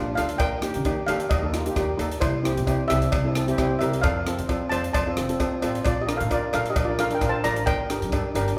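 A lead steel pan with a shimmering tone and a mellow, dark accompanying double-seconds pan open this festive, bouncy calypso excerpt in Bb major at 132 BPM, over a woody, thumpy pizzicato upright bass on gut strings. At 0.2 seconds a crisp fusion drum kit with a punchy kick, hi-hat and rim click joins alongside a metallic cowbell, with a lightly swung sixteenth-note feel as the chords move through Eb, C, F and Bb to Gmadd9. The soft-toned accompanying pan sits up front, and the whole is bathed in the lush reverb of a recital hall or church.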